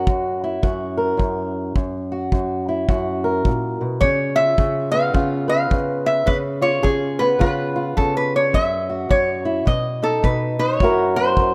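This is a short cut from a laid-back, soulful acoustic country blues number in F# mixolydian, moving at 106 BPM in 4/4 with a loose swung eighth-note feel. A fingerpicked old ladder-braced acoustic guitar carries the accompaniment throughout, its old strings giving a dark, woody, boxy tone that reaches from low F#2 up to B4. A lap resonator guitar, played with slide and fingerpicks, sounds briefly at the start and then takes up the melody from 4.0 seconds, singing in a metallic, nasal voice between G#4 and E#5. A punchy kick drum played with brushes sits in a small room sound from 0.1 seconds, keeping the pulse under the guitars. The harmony moves from F#7 to C#7 at 4.0 seconds, then passes through F#5 and B before landing back on F#7. All three parts sit up front in a rough home demo mix with a light touch of studio reverb.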